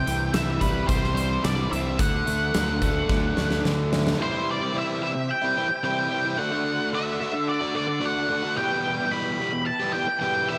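Swaggering, driving classic rock at 109 BPM: an up-front octave-fuzz lead guitar with slapback echo sings the melody over a compressed overdriven rhythm guitar riff, a crunchy second guitar in the background, a growling overdriven fingered bass and a big drum kit with a punchy kick in a bright stone room, whose fill at 3.1 s carries into 4.2 s, where bass, drums and background guitar have dropped away and a very quiet, gritty tonewheel organ with slow rotary speaker enters with sustained chords, all moving through C, D and E minor in a lush hall reverb with a big arena sound.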